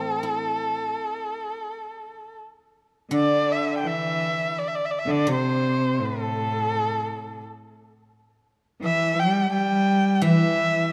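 A dark-toned erhu sings the wistful, tender melody up front, its soft attack, expressive vibrato and gliding portamento shaping a rubato line in the A yu mode at around 84 BPM in 4/4. Underneath, a fingerpicked guzheng rings out with silvery accompaniment, and at 3.1 s a bright, biting cello enters up front with an intense, lightly vibrato-touched second line that carries through to the end at 10.9 s. This fragment of a longer Chinese chamber piece sits in a moderate concert hall reverb with a dusky, mellow production.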